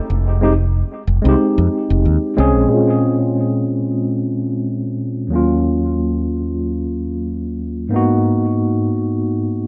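Sunset chillout at 92 BPM in Bb minor with a light 16th-note swing, relaxed and smooth, in which a dark, round fretless electric bass sits up front until 2.6 seconds while a worn, slightly out-of-tune tine electric piano, clean yet sounding as if through built-in speakers with a low-pass filter and digital delay, carries Fm9, Bbm9, Ebm9 and Abm9 chords from 0.4 seconds to the close of this cut from a longer piece, framed by a moderate recital hall reverb.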